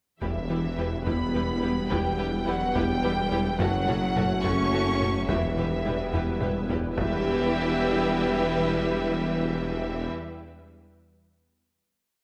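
A wet scoring-stage reverb wraps this complete cinematic cue, a hybrid of orchestra and electronics in E dorian, moving at 71 BPM in a straight 6/8 with a vast, relentless mood. Lush, distant violins carry the melody with smooth vibrato, while a second violin line and the viola section sit in the background on repeated notes and sustained chords. They are joined by mellow, roomy French horns in slow swelling chords and a hollow, flute-like pad that warbles very quietly underneath. The low end is heavy and layered: a close, expressive cello section doubles the tune at the octave, a mellow tuba doubles the bass line, a very quiet double bass section sustains on the beats, and a thick, beating detuned saw bass holds a menacing drone. A round analog bass pulses a dark ostinato until about 6.9 seconds. A hard-sticked, band-limited taiko ensemble drives a big ostinato, breaks into a drum fill from 6.1 to 7.0 seconds, and continues until about 8.1 seconds. 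The harmony moves from Em to F#m and back to Em, and the theme gives way at 7.0 seconds to a held final chord.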